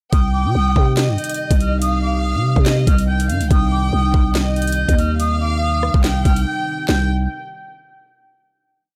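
An airy concert flute carries a looping C minor melody high in its register, repeated like a sampled loop with vibrato, a soft attack and analog delay, giving this short, tense drill piece its cold hook. Beneath it, a chamber violin section bowed sul tasto adds a sparse, intimate counter-melody that also repeats like a loop and shares the analog delay. A deep, detuned analog pad joins at 1.2 s with slow-attack sustained chords colored by chorus and phaser. The drill drum kit sits up front at 142 BPM in a half-time feel, with a knocking kick, a sharp snare layered with handclaps, rim clicks, and metallic hats that skip and roll quickly. A growling, buzzy 808-style bass follows the kick with long sub-bass notes and pitch slides. After a brief break at 6.5 s, the hook gives way at 6.9 s to a final chord, all set in an echo-heavy digital ambience.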